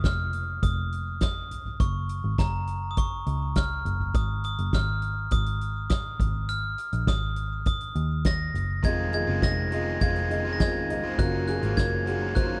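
This earnest, bittersweet slice of piano-driven pop opens at a straight 102 BPM with a sparkling, hard-mallet glockenspiel melody over a round, foam-muted electric bass and a soft-mallet drum kit with a boomy kick sitting up front. At 8.8 seconds a dark, woody upright piano adds accompaniment alongside an overdriven semi-hollow guitar riff, and at 10.3 seconds a very quiet, blurred granular pad drifts in with sustained chords. The harmony moves through shaded chords such as Fm7 and Gbmaj7, captured in a dry, close 1970s-style studio sound.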